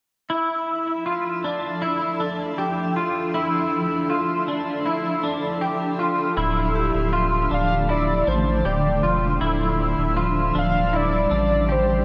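A clean, twangy electric guitar opens at 0.3 seconds with chorus-and-tape-echo arpeggios over a Dmadd9 chord, joined by a blurred, evolving granular cloud pad, before a thick saturated sub bass arrives at 6.4 seconds and a warbling, nostalgic lead carries the melody alongside a dark, ringing vibraphone in the background, all bathed in a wet shimmer reverb in this haunting, melancholic 79 BPM dream pop excerpt in D minor.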